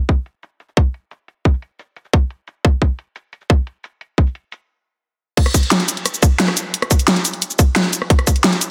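Mechanical and aggressive, this drum and bass excerpt drives along at 176 BPM in a straight 4/4. An overdriven electronic kick drum sits up front, tight and layered, playing from 0.1 to 8.3 seconds. Around it, a dubstep drum kit brings a huge snare, bright hi-hats, crash cymbal, rim click and shaker, with low-pass filtering on the hats, percussion, cymbals and snare, and the kit carries a tape-warm quality. After a brief stop at 4.7 seconds, the beat drops back in at 5.4 seconds for the closing section. Light reverb adds a digital ambience, and the dense, heavily limited master keeps the sound pressed and forceful.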